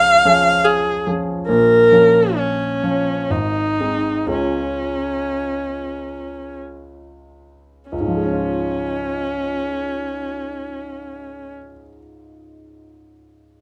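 A rich, bowed viola sings the tender melody up front, smooth and even with vibrato, playing from the start until 11.5 seconds in this romantic classical duo in Db major and 3/4 time. A clear, polished baby grand piano accompanies through chords of Db, Bbm and Ab, with a rubato feel between 44 and 74 BPM that slows down until 7.9 seconds, and it sounds on alone until 13.6 seconds. Light reverb and a dark, warm production frame this passage, cut from a longer piece.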